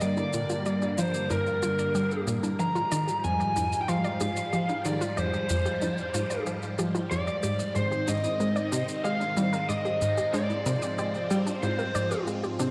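Ambient, sequencer-driven space music with a mysterious, cosmic mood, moving at a steady, straight pulse in 4/4 and heard here as a short cut from a longer piece. Up front, a dark, overdriven electric lead guitar through a small cranked amp carries the melody with delay until 12.2 seconds. A bright, swirling vintage string machine holds sustained chords through ensemble chorus and phaser, moving from Gm to Fmadd9 and on to Ab at 7.8 seconds. Beneath it, a punchy, funky analog bass plays a wave-folded, decaying riff with analog chorus and delay, while a lush, detuned unison pluck traces arpeggios in the background, roughened by 12-bit sampler grit and its own delay. Electronic shaker and congas with a tape-warm tint add a faint pulse with delay, and the whole mix sits in a wet scoring-stage reverb with the soft haze of cassette tape.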